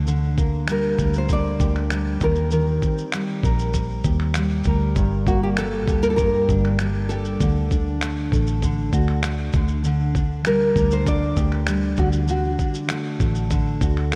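Acoustic pop at 98 BPM in G harmonic minor, tender and wistful, where a full-bodied fingerpicked steel-string guitar with subtle chorus sits up front over a dark, round, foam-muted electric bass, a gritty, compressed sampler-style kit of finger snaps, thumpy kick and shaker enters at 0.1 seconds, and a small, fingerpicked nylon-string guitar carries the melody from 0.7 seconds, all moving through chords like Gm/D, Eb6 and D in a dreamy mix soaked in lush hall reverb.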